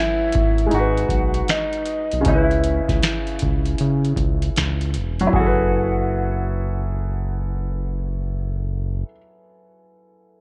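A booming analog drum machine sits up front in this melancholic, nostalgic lo-fi hip hop fragment, its deep kick, crisp snare, metallic hats and finger snaps carrying a tape-soaked, small-room character from 0.3 s until they stop at 5.6 s. The groove moves at 78 BPM in 4/4 with a lazy 16th-note swing. Beneath it, a round analog bass, dark and sustained with a detuned edge, holds the low end. A felt-muted upright piano lays down soft, intimate chords through cassette grain and a low-pass filter, moving from F#m11 through G#m7 and C#m7 before returning to F#m11 at 5.3 s. Over this, an electric guitar through a small old amp picks a slightly broken-up, lo-fi melody between D#4 and F#4 in F# dorian. The whole mix is wrapped in light reverb and worn, warbling cassette tape with drifting pitch, giving this short cut from a longer piece a hazy, faded feel.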